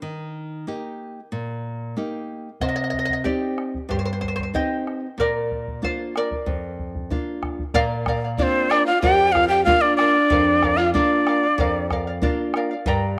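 Wistful and melancholic, this fragment of a longer Andean folk piece moves at an unhurried, straight 4/4 pulse. A classical nylon-string guitar opens alone, fingerpicked and bright, with audible finger squeak. The shimmering charango, with its double and partly octave-doubled strings, and the round bombo join at 2.6 seconds, and the charango is featured through the opening section. At 8.4 seconds the melody arrives on a breathy cane quena, end-blown and up front with soft attacks and vibrato, while a mellow bamboo pan flute carries a lower second line, its chiff, dulled highs and slightly unsteady playing adding a fragile, human quality. Both winds fall away at 11.9 seconds, leaving the strings and drum to close out the passage. A wet spring reverb and a small room give the ensemble an intimate, softly blooming space.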